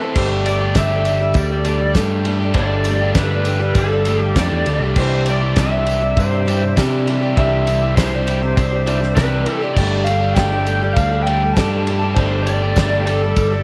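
A small-room recording with light reverb carries this open-road folk and heartland rock excerpt at 100 BPM in straight 4/4, where a dry, damped 70s drum kit with a fat snare and dark cymbals and a growly, up-front picked electric bass drive beneath a double-tracked overdriven riff guitar, a lo-fi lead guitar through a small cranked amp carrying the melody, a boxy parlour acoustic guitar, a reedy accordion with light tremolo tuning holding sustained chords, and a jingly tambourine in the background, all moving from Gsus2 to Cadd9 and back.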